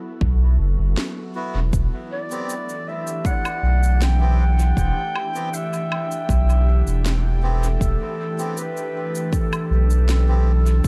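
Meditative and hazy, this short ambient dub cut from a longer piece moves at 79 BPM in a straight 4/4, opening on an organ-like pad with a chorused, reverberant glow that sustains Esus2 moving to Am7/E over a deep, round sub bass placed up front and an overdriven electronic kick. From 1.0 s a woody, tape-warm snare with cabasa and woodblock enters through dub echo, and from 1.4 s a reedy, nasal melodica adds echoing stabs. From 2.1 s a dark, distant clarinet carries a solo melody in a classical style, also trailed by dub echo, within an otherwise dry mix.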